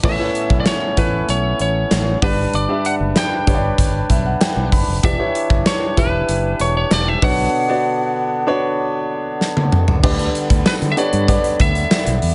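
A straight 4/4 groove from an up-front, gated 80s drum kit with a tight kick, tambourine and toms drives this uplifting, glossy slice of 1980s-style pop, joined by a punchy fretless electric bass and very quiet, crisp group handclaps. A clear concert grand piano with deep bass plays the accompaniment and adds a fill at 3.8 seconds, while a reedy, close-miked accordion holds sustained chords underneath. A dark, slightly broken-up lead guitar carries the melody through tape echo, and a drum fill at 9.4 seconds leads into a new section, set in light small-room reverb.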